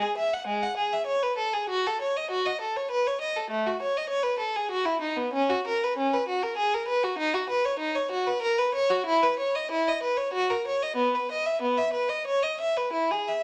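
A clear, focused solo violin, bowed by one player with vibrato and set close and up front in light reverb, carries this radiant, flowing baroque-style suite movement in 3/4 at a rubato 88-102 BPM, ranging from G#3 to F#5 and settling into B major from 5.3 s in a passage cut from a longer piece.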